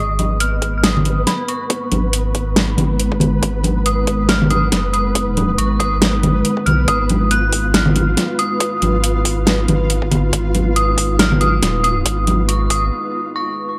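A dry, gritty hardware-recorded excerpt of brooding, heavy deep dubstep at 139 BPM in a half-time, swung G# dorian feel, where an eerie, inharmonic synth bell carries the melody through chorus, 12-bit sampler grit and dub echo over a moody, detuned ambient pad under a filter sweep, a thick saturated sub bass up front, a flickering granular texture, a dubstep kit with a huge snare and metallic hats, bright soft-handed congas and an overdriven electronic kick, all building until the other parts fall away by 12.9 s and the bell rings on alone until 13.8 s.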